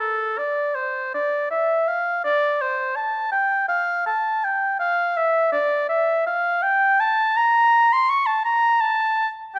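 A mellow oboe, up front with light vibrato, soft attacks and a smooth top end, spins out a flowing, solemn baroque-style classical fantasia alone in F major at 82 BPM in a rubato 3/4, ranging from A4 to C#6 through a moderate recital-hall reverb in this 9.6-second excerpt from a longer piece.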